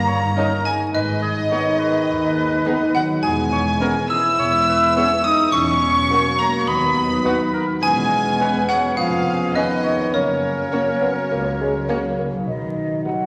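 A straight 4/4 pulse carries this short, whimsical film cue, cut from a longer piece, with a quirky, playful mood. A sul tasto chamber violin section with light vibrato shares the melody with a dry, woody xylophone played with wooden mallets, which stops at 12.1 s. An airy, hollow silver concert flute sits in the background on a second line, joined by a smooth-topped solo oboe, a very quiet, clear clarinet and a second, very quiet violin section. A tight, close-miked French horn section holds sustained chords while a ringing, fingerpicked concert harp spreads arpeggios. Underneath, a dark bassoon and a soft-attack viola section fill in the accompaniment, and background cello and floating, pure double bass sections provide the bass. The whole cue sits in a wet scoring-stage reverb with a layer of vinyl crackle, the harmony moving through minor and dominant seventh colours before landing on a B chord at 12.5 s.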